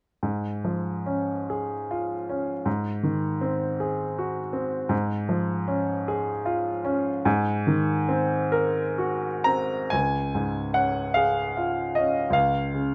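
Close, detailed microphones and a light reverb give this short passage from a longer work an intimate, up-front sound. It is a romantic classical nocturne for solo grand piano in D-flat major, serene and nostalgic in mood, moving in 6/8 at roughly 39 to 55 dotted-quarter beats per minute with a free, rubato feel. The piano's tone is clear and present, ranging from the D-flat two octaves below middle C up to the B-flat high in the treble. The harmony rocks gently between D-flat over A-flat and A-flat dominant colours, reaching an A-flat ninth before settling onto a plain D-flat chord at 9.9 seconds, where a new section begins. Near 12.3 seconds the chords fall away, and the clip ends at 12.9 seconds.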